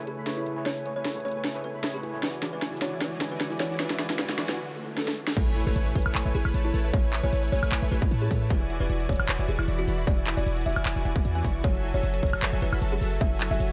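Future bass in a lush, dreamy half-time feel at 153 BPM, this excerpt builds from Amaj7 and E7 with a filtered soft supersaw riff, a woody kalimba melody, a deep boomy 808-style bass, a trap kit with sharp snare and metallic hats, a barky overdriven tine electric piano and an ethereal airy pad, all pumping under sidechain. Then a very quiet riser, swell and impact lead into the drop at 5.4 seconds, where a hard-clipped electronic kick and a round, tine-like synth pluck playing arpeggios join as the chords return to Amaj7 and E7 before moving on to F#m7.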